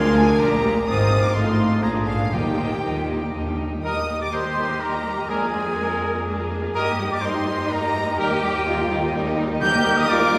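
In a rubato 3/4 at 125 BPM, this spirited, cheerful excerpt from a quick classical-period symphony movement in Eb major places a lush, close violin section on the melody, with a pure flute in the background and a clear, distant oboe, a very quiet second violin section and a mellow clarinet, which drops out at 3.9 seconds, all adding second lines. Smooth, even violas, warm cellos, rich double basses and smooth-topped horn chords fill out the middle and low end, while very quiet, articulate timpani struck with hard mallets sound at 2.3 seconds and again at 9.6 seconds, and a roomy trumpet adds stabs from 3.8 seconds. The harmony settles onto Eb, and the orchestra rings in a cathedral-like reverb.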